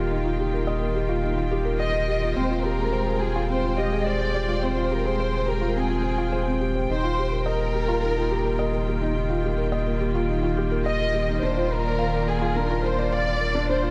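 A moderate, lush hall reverb with a 2.4-second tail surrounds this short, tender and hopeful electronica piece, cut from a longer work and moving at 106 BPM in a straight 4/4 in Eb major. From the first moment, a felt-muted upright piano plays a soft, intimate riff through a digital delay, while a rich studio string section holds smooth, evenly bowed chords with light vibrato alongside it. A round, sine-like sub bass sits deep and up front on a sustained Eb, grounding the harmony as it moves from Ebadd9 to Fmadd9 over Eb and back, then settles on Bb over Eb. At 1.8 seconds a dark symphonic violin section enters with an expressive, up-front melody, its soft attacks, vibrato and portamento giving the line a lush quality. The mellow piano, the smooth bed of strings and the dark violins together create a gentle glow that carries through to 13.9 seconds.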